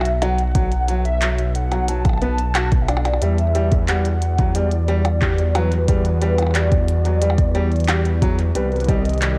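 Worn, warbling old tape colors this short IDM cut with a drifting pitch, while light reverb and a digital ambience lend a hazy air to the whole recording. At 90 BPM in a straight 4/4, the mood is wistful yet playful, moving from B7sus4 to Emadd9 and touching Cm near the close. A nostalgic triangle-and-sawtooth lead carries the melody with chorus, vibrato and tape echo, while a felt-muted upright piano plays soft, intimate arpeggios through a delay. Up front, a dark detuned saw bass rumbles with tube saturation, and a glitchy kit of clicky hats, handclaps and percussion blips joins a deep electronic kick that enters at 0.6 seconds. At 3.8 seconds a lo-fi square-and-triangle pad arrives in the background with sustained chords, slow attack and sidechain pumping.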